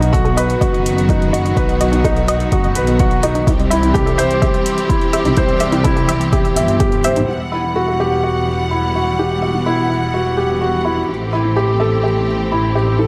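A felt-muted upright piano sits up front with a soft, intimate riff through digital delay, over rich, smooth symphonic strings holding sustained chords, a bright bowed double bass section, and a mellow detuned sawtooth pluck tracing arpeggios in the background through cassette tape and delay. The strings, bass and pluck pump to the sidechain in this melancholic, hypnotic piano and strings electronica at 126 BPM in E harmonic minor, while a punchy, overdriven electronic kick and hi-hat drive the opening. The kick drops out just before 7.3 seconds and the hi-hat at 7.3 seconds as the harmony shifts from B and C to Emadd9 and Am7, leaving the instruments in a light, small-room reverb in this excerpt.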